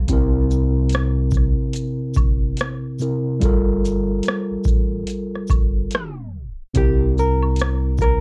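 Lo-fi hip hop with a hazy, reflective mood and a swung 16th-note feel, cut from a longer piece and coloured by cassette tape and light reverb. A mellow tine electric piano moves between C7 and Gm9 over a round sine sub bass, while a booming analog drum machine sits up front with a deep kick, metallic hats, rim click and shaker, and a close, dry layer of maracas and woodblock stays low in the mix. A tape stop arrives from 5.9 to 6.8 seconds, and then a dark, fingered hollow-body jazz guitar enters with the melody.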